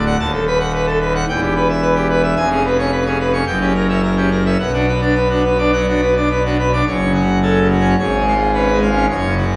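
A full pipe organ plays alone throughout this brief classical toccata passage, cut from a longer piece, its mixtures giving a brilliant, majestic edge to a romantic voicing that sits up front. The mood is stormy and majestic, moving in a steady, straight 4/4 across a range from a deep D1 up to A5. The harmony presses forward through dominant-seventh chords such as B7/D# and F#7b9 before settling on Bm, and a second section begins at 6.9 s on F#m, closing the fragment on C#7/G#. The sound comes from further back in a stone room whose reverb adds a 1.3-second tail around the organ's full tone.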